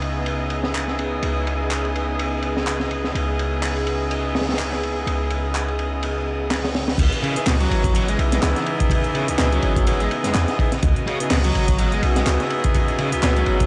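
Crunchy, gritty breakbeat drums with a punchy kick, high-tuned snare and dark, rolled-off cymbals drive this energetic, raw breakbeat excerpt at 125 BPM in C# minor, swung on the sixteenths and joined from 0.7 seconds by layered electronic handclaps and hi-hat. A deep, boomy 808-style bass sits up front beneath biting bowed strings holding sustained chords, opening on C#m9, with 12-bit sampler grit and sidechain pumping, while a clear, punchy horn section fires filtered stabs through analog delay. The drop arrives at 7.0 seconds, and a bright, distorted electric guitar riff enters at 7.2 seconds; the whole mix carries a cassette-tape, small-room home-recording character.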